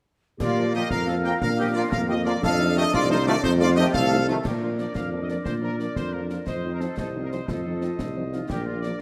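Rousing and proud, this military-style march for wind band moves in a straight 6/8, heard as a fragment cut from a longer piece. A bright trumpet section carries the melody while an up-front, warm tuba anchors the bass. An airy large flute ensemble with expressive vibrato joins a distant, roomy woodwind section and a background euphonium with light vibrato in the supporting lines. A very quiet, dark, tight French horn section adds accompaniment, and a trombone section with a smooth top holds sustained chords until both it and the flutes stop at 4.4 seconds. Concert snare drum, clash cymbals and concert bass drum sound close and dry against the moderate reverb of a scoring stage, as the harmony alternates between tonic and dominant seventh.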